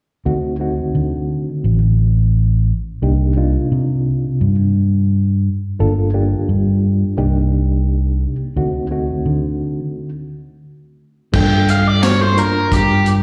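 A reedy, worn electric piano and a round, up-front fingered bass open this smoky, soulful straight-eighth soul blues excerpt at 0.3 s. The piano sits back as accompaniment, slightly out of tune and lightly overdriven, its sound shimmering with a fast tremolo and slapback echo as if through built-in speakers, while the dark, amped bass carries the low end. The harmony moves through a moody minor progression of D7b9, Cm7 and Gm7 before a break arrives at 10.0 s. At 11.3 s a crunchy breakbeat kit kicks in, gritty and saturated with dark cymbals, a tight kick, a medium-tuned snare, hi-hat and tambourine, and its top end rolled off. A moment later a bright, picked overdriven electric guitar steps forward with a short slapback-echoed melody over a closing Gm9. The whole thing is heard like a live gig through the venue's PA, with a recital-hall reverb around it.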